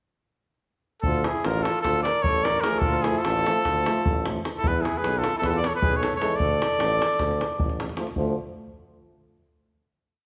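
A clear, up-front trumpet opens this restless, virtuosic Balkan brass band piece at 1.0 s with a motif-based melody in period phrases, over a tight, vintage, band-limited davul playing a two-stick pattern and a distant, roomy tuba with light vibrato holding root and fifth on the main beats, in a brisk 9/8 at 305 BPM in D Hungarian minor, as a warm, close-miked flugelhorn adds a harmony line mostly in thirds and two background euphoniums, one mellow and the other distant and roomy, join around 2.6 s with offbeat chord tones, the harmony moving through Dm, E and D5 before a final Dm chord at 8.2 s rings out in a wet recital-hall reverb.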